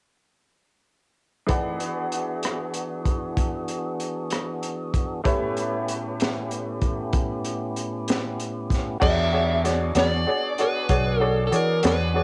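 Laid-back and gritty, this slow blues in 12/8 moves with a straight feel and is cut from a longer piece. From 1.5 seconds a bright upright piano with a woody, slightly detuned, intimate character and audible action noise plays the accompaniment over E7 and A7. Alongside it, a tonewheel organ holds fat, clean sustained chords through a slow rotary speaker, with its key click and vibrato showing. A crunchy breakbeat kit sits up front with a saturated sound, dark cymbals, a high-tuned snare, a tight kick and rim clicks under a rolled-off top. At 9.0 seconds the harmony shifts to E13 as an overdriven slide guitar enters with a dark, fingered melody, and a fretless electric bass joins, amped and coloured by analog chorus. The room is nearly dry, and cassette tape lends its grain to the piano, organ, drums and guitar of this home recording.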